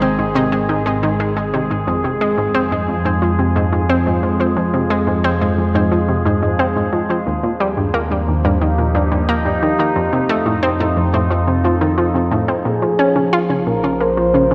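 Ambient, sequencer-driven space music with a cosmic, mysterious mood, where a round, nasal analog pluck riff and a morphing wavetable pad sit up front over a warbling, pulse-width-modulated analog drone bass, before a smooth, expressive synth lead with vibrato enters at 12.7 seconds, all bathed in a wet plate reverb and an echo-heavy, cassette-tinged mix.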